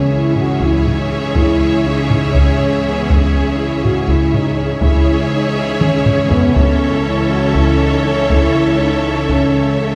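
Dramatic and relentless, this cinematic, epic orchestral film-score excerpt drives forward at 242 BPM in 7/8 with a straight feel, rooted in C# minor and shifting to A over C# at 6.6 seconds. A taiko ensemble struck with heavy sticks pounds in from 0.4 seconds, with a drum fill at 5.8 seconds, while barely audible timpani on medium mallets touch in at the very start and again around 6.6 seconds. A mellow French horn section holds sustained chords with light vibrato, supported by a clear, focused string section sitting in the background. Above them, clear symphonic violins carry the melody, a dark, close studio violin section adds a second line, and dark violas with expressive portamento fill in the accompaniment. Rich, smooth cellos and distant double basses anchor the bass on C#, and the whole ensemble is heard from further back in a scoring stage with a wet reverb.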